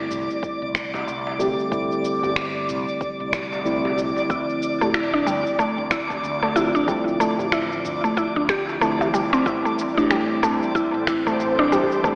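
Warm and meditative, this organic downtempo passage at 93 BPM sways on a swung 16th-note feel, with a mellow tine electric piano pumping through analog delay over a dark, round fretless bass, while a twinkling granular texture sparkles high above and chords move from C69 to Dm9 to Am7. An afro-pop drum kit of finger snaps, shaker and toms sits with a deep, tape-toned electronic kick, and a tight, cracking djembe sounds distant in the background. A woody, up-front mallet-like synth pluck brings chorused, delayed arpeggios from 4.3 seconds, and an ethereal, warbling pad drifts in at 10.3 seconds, all inside a dreamy, reverb-soaked hall with an AM radio tint.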